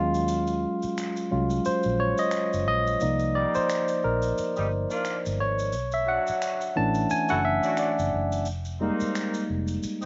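R&B and neo-soul with a late-night, introspective mood, this short cut from a longer piece features a bright, barky tine electric piano up front, soloing over minor-eleventh chords with a lightly swung sixteenth-note feel, alongside a dark, round, foam-muted fingered electric bass, distant maracas and finger snaps, and a mellow jazz-style horn section with light vibrato and a soft attack that enters with stabs at 3.3 s, the whole mix sounding dry and dull-topped.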